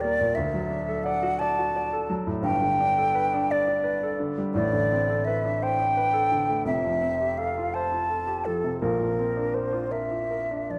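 A mellow silver concert flute sits close and up front, its pure, hollow metal tone carrying the melody between A4 and A5 with vibrato and tongued notes. This dreamy, luminous impressionist duo moves in 6/8 at 57 BPM in dotted quarters, its uneven beats stretched by rubato and its tuning set slightly low at A4 = 437 Hz. A grand piano supports the flute from Eb1 up to D5, sounding present and polished, and sitting a little beneath the flute in level. The harmony drifts through Dadd9, Gadd9, Am11, Fmaj9 and Bbadd9, lending a soft, colourful glow. Both instruments play throughout the 10.8 seconds, bathed in a wet scoring-stage reverb with a 1.8-second decay and a dark, warm production. The passage is cut from a longer piece.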